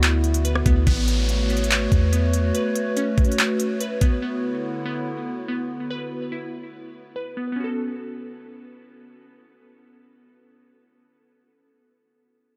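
Floating and blissful, this atmospheric cloud-rap excerpt moves at 143 BPM in a half-time feel in A major, with a warbling, nostalgic tape-like pad holding detuned chords until 5.9 seconds, a glassy, crystalline wavetable pluck spinning filtered arpeggios with tape echo through 11.4 seconds, a deep, round 808-style bass, a trap kit of knocking kick, crisp hats, handclaps and rim click, and an electronic downlifter from 0.9 seconds, all under light reverb.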